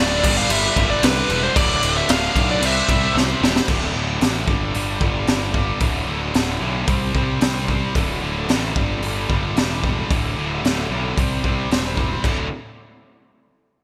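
Driving and heavy, this hard rock excerpt moves at 112 BPM in a straight 4/4, opening with a bright, overdriven lead guitar melody with digital delay and a barely audible, thick tonewheel organ with key click and slow rotary speaker, both gone by 3.7 seconds. Three picked, distorted guitars grind out the riff beneath, one of them high-gain, double-tracked and very quiet before dropping out at 3.7 seconds, while a fuzz-toned, punchy electric bass plays underneath. Up front, a raw garage drum kit with a high-tuned snare and pumping room sound plays a fill just before the riff moves through chords built on D, G and C, all set in a bright 1980s-style digital production with light small-room reverb.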